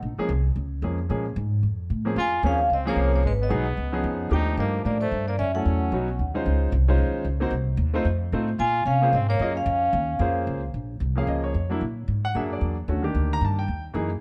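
A woody, pizzicato upright bass opens this cool, swinging small-group jazz excerpt, joined almost at once by a clear, up-front concert grand piano with a deep low end. At 2.2 seconds a mellow, soft-mallet vibraphone takes the melody with a ringing, airy tone and motor vibrato, while a breathy trumpet with light vibrato carries a second line. The pair stops at 6.3 seconds and returns briefly before bass and piano close out the passage under light reverb.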